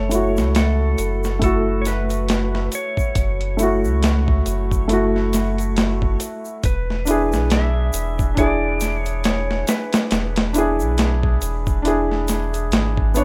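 A muted upright piano with thin felt, a round sine sub bass and a dark, clean lap steel open this cinematic, melancholic trip hop excerpt, with a sampler-style drum kit and an egg shaker joining at 0.1 seconds. At a slow 69 BPM in F# minor with a swung 16th feel, the harmony moves from F#m7 to E7 at 6.6 seconds. The soft, intimate piano sits up front beside the deep, sustained bass, its sound colored by harmonic tremolo, a low-pass filter, tape echo and a filter sweep across the whole passage. The fingered lap steel carries the melody with slide and volume swells, its compressed tone trailing tape echo, and it drops out at 12.3 seconds. The gritty, overdriven drums sit up front with a thumpy kick, a medium-tuned snare, hi-hat and a small room reverb, while the close, dry shaker stays in the background. The whole recording has the rough, fairly dry feel of a home demo.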